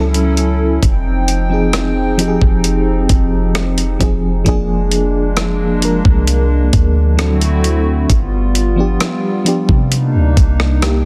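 Gritty, overdriven sampler-style drums with a thumpy kick, hi-hat and rim click sit up front beside a deep, boomy 808-style bass in this moody, late-night contemporary R&B excerpt at 66 BPM, while a dark FM electric piano with tremolo plays the accompaniment and a hollow, flute-like pad sustains chorused chords that pump against the beat through a harmony moving from F#m7 and Fm7 to Bb7/F, D7, G7 and Cm7, all in a dry, dense, heavily limited mix.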